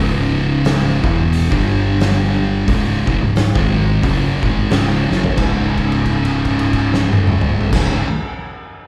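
A live band sound fills a large studio room with moderate reverb in this sludgy, brooding stoner and doom metal excerpt, set at 88 BPM in C# minor with a swung 4/4 feel. Two thick fuzz guitars play the riff from the start, one dark and the other more up front, over a growling fingered bass with bright, overdriven tone, moving through C#m, G5 and C#5. An oversized low-tuned kit joins at 0.6 s with a boomy kick, fat snare and dark cymbals, and its fill at 5.0 s leads into a held note that rings until 7.7 s.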